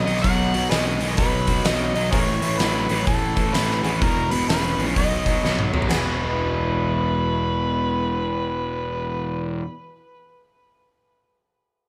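A gritty, amplified harmonica with vibrato, scooped notes and tongue slaps takes a jazz-styled solo through digital delay in this driving, raunchy blues rock power trio and southern rock cut at 127 BPM with a swung feel, riding over a crunchy, double-tracked overdriven guitar riff, a growly fuzz bass and an oversized low-tuned drum kit with a fat snare, punchy kick and dark cymbals in a pumping stone room, whose fill at 5.4 s leads into the kit's final moment at 6.0 s as the chords move from B through A to E5, back to B and on to E5, all set in light reverb.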